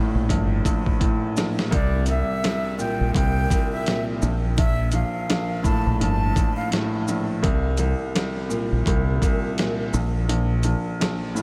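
A breathy concert flute drifts through tape echo from 1.7 to 6.7 seconds over a dark, gritty boom-bap hip-hop groove at 84 BPM in G dorian, carried by a clear, woody upright piano with a cassette-tape tint, a deep, round dub bass, and a dusty, compressed sampler-style kit with a thumpy kick whose opening fill gives way to a muted kick from 10.3 seconds, all soaked in huge dreamy reverb.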